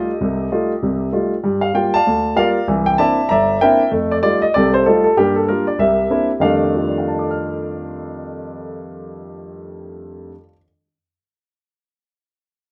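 A solo grand piano opens this swinging jazz fragment of a longer piece, its polished, present tone sitting up front in a wet studio reverb and a rough home-demo mix. At a brisk 194 BPM in 4/4 with swung eighths, it cycles through F9, Gm7 and C9 in F mixolydian, ranging from deep bass to high upper notes, then settles on an F13 at 6.4 seconds before the piano stops at 10.6 seconds. The mood is warm and swinging throughout.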